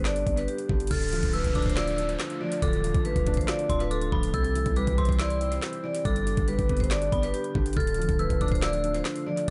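A ringing vibraphone, struck with medium hard mallets, carries the melody through tape echo in this menacing, melancholic half-time trap excerpt at 140 BPM in D dorian, over a felt-muted upright piano whose soft, vintage tone includes audible action noise. A punchy, heavy 808-style bass and an up-front trap kit with a knocking kick, woody snare, metallic hats, claps and crash drive it beneath chords moving from G to Dm, C and back. At 0.9 seconds an eerie, inharmonic synth bell and an electronic downlifter enter, and from 1.6 seconds a breathy pad with chorus and phaser sits in the background of the echo-heavy digital ambience.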